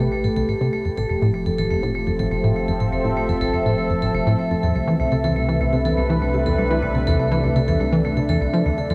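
A dreamy, reverb-soaked mix with a cassette-tape haze carries this expansive, cosmic stretch of sequencer-driven space music at 123 BPM in 4/4, where a bright, evolving sawtooth pad with chorus holds sustained chords up front, a punchy, funky analog bass with subtle chorus and delay plays a plucky riff over a deep, round sine sub bass, and a metallic, ringing vibraphone struck with hard mallets spins delayed arpeggios from 0.1 seconds as the harmony moves through Am7, Fmaj7 and Cmaj7.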